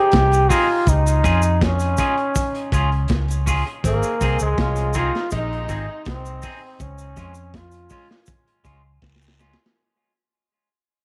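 Drenched in a moderate spring reverb and fading out throughout, this short cut from a longer roots reggae piece has a serious, hypnotic mood. A clear, vintage trombone carries the melody up front with tape echo until 8.3 s, while a mellow, distant horn section with light vibrato sits in the background on a second line and stops at 6.0 s. Underneath, a round, foam-muted electric bass, a crunchy, saturated breakbeat kit with a tight kick, compressed cabasa and guiro, and a bright, twangy clean guitar with tape echo hold the groove until a drum fill at 9.0 s.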